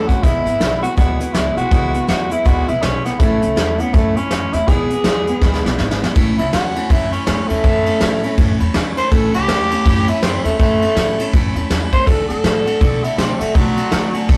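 A rough rehearsal-room recording with a warm, saturated edge and a small room's moderate reverb carries this upbeat, rowdy rockabilly excerpt, cut from a longer piece and swinging at 162 BPM in A major. Up front, a raspy tenor saxophone with vibrato carries the melody, while a bright, full-bodied picked dreadnought acoustic guitar picks out the accompaniment, a woody pizzicato upright bass holds the low end, and a soft, roomy brush kit with a punchy kick keeps time. The chords move from E to A and back, then a drum fill at 5.4 seconds leads into the saxophone solo from 6.2 seconds, where the harmony settles on A before shifting to D.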